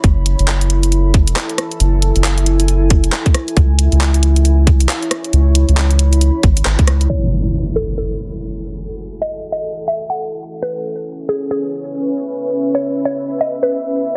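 Bouncy and soulful, this two-step UK garage excerpt swings at 136 BPM in F# minor, opening on a tight overdriven kick, a gritty garage kit of hi-hat, rim clicks, handclaps and crash, and a deep, round dub sub bass over a dark, detuned sawtooth pad that pumps with chorus and reverb across F#m9 and C#m7, until at 7.1 seconds the drums and bass drop away as an impact hits, a filter sweep begins and a woody FM mallet pluck takes the melody through phaser and tape echo.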